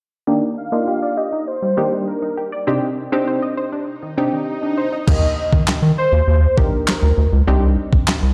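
Carefree and upbeat, this dance-pop excerpt opens with a punchy, nasal chord stab and a tight, driving sequenced synth arpeggio, both pumping under sidechain and chorus as a filter sweep runs until 5.1 seconds, while a velvety synth lead with vibrato and tape echo carries the melody over Ebmaj7 and Cmadd9 harmony. An electronic swell builds from 3.6 seconds, and at 5.1 seconds a deep, round analog bass and a clean 12-bit drum machine with a thumpy kick, fat snare, handclaps and crash arrive up front. The whole sits in light digital ambience, heard as if played on a big sound system in a bare stone room.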